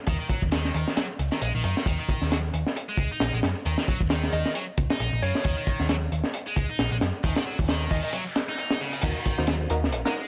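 A small room ambience frames this energetic, swaggering breakbeat cut from a longer piece, moving at 134 BPM in 4/4 with a 57% swing on the sixteenths and sitting in Eb dorian over an Ebm chord. Up front, a crunchy breakbeat kit drives things with a high-tuned snare, tight kick, dark cymbals and a gritty, saturated tone with a rolled-off top, while a hollow-body short-scale picked electric bass adds a round, amped low end. A double-tracked, overdriven electric guitar plays a bright riff shaped by a low-pass filter and delay. At 4.3 seconds a soft, keys-like FM synth lead enters in the background, its warbling vintage tone coloured by vibrato, chorus, a telephone effect and delay. A very quiet electronic noise sweep runs from 7.6 seconds into a drop at 9.0 seconds, where a filtered dub chord stab arrives with a muted, detuned sawtooth pluck, coloured by cassette-tape character, chorus and delay.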